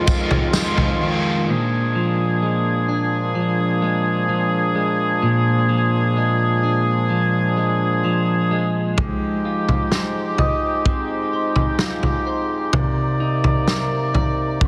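A straight 4/4 beat from a gritty, saturated indie drum kit with a punchy kick and tambourine drops away after the first second and returns at 9.0 s in this ethereal, haunting dream pop fragment, where an up-front clean electric guitar plays chorused, delayed arpeggios over a soft-attack woodwind section holding vibrato-rich chords, while a twangy, delayed pedal steel briefly sounds its melody in the background and an overdriven hollow-body guitar with harmonic tremolo and chorus accompanies only until 1.5 s, inside a huge ambient reverb.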